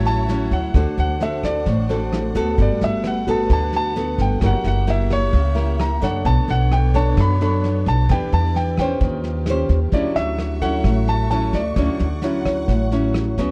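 Sunny and breezy, this bossa nova excerpt in D major moves at 131 BPM. A vintage-toned grand piano carries the melody over fingerpicked nylon-string guitar and a woody pizzicato upright bass, both up front, while a mellow tine electric piano and lush bowed strings with expressive vibrato sit in the background. A dark, smooth brush kit plays kick, rim click and snare, all within a dry, warm production that moves through chords such as Dmaj9, Gmaj9, F#7b9 and Bm9.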